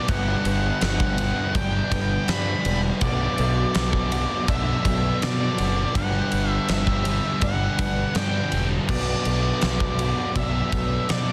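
Shoegaze and dream pop rock with a hazy, melancholic mood, this short cut from a longer piece drifts between Gmaj7 and Bm7 as a dark, octave-fuzz lead guitar sings its melody through analog delay over a thick fuzz guitar riff and a raw, lo-fi garage guitar riff washed in reverse reverb. A boxy, shimmering twelve-string acoustic guitar picks octave-doubled arpeggios with finger squeak, ensemble chorus and delay in the background. From 0.1 seconds a growling, bright, overdriven fingered bass and a huge arena drum kit, up front with a fat snare, punchy clipped kick and rolled-off top, fill out a dense, heavily limited modern master.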